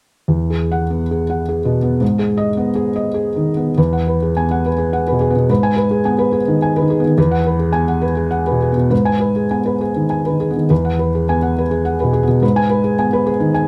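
Close, dry and detailed, this peaceful, intimate neoclassical minimalist piano piece, cut from a longer work, sets a solo felt-muted upright piano up front, its mellow, muted tone and audible action noise drifting in a rubato 3/4 between Eadd9 and G#m chords across a range that spans the low register and the upper treble, with a new section opening at 3.8 seconds.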